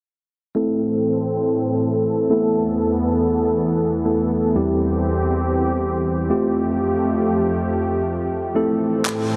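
A straight 4/4 pulse at 120 BPM in A minor frames this bittersweet yet confident dance-pop fragment, where a mellow, clean tine electric piano from 0.5 seconds and a detuned, warbling sawtooth analog pad with chorus carry the Am, Esus4, C/E and Fadd9 chords through a filter sweep in a dreamy mix soaked in huge reverb, before sampler-style electronic handclaps land briefly at 9.1 seconds.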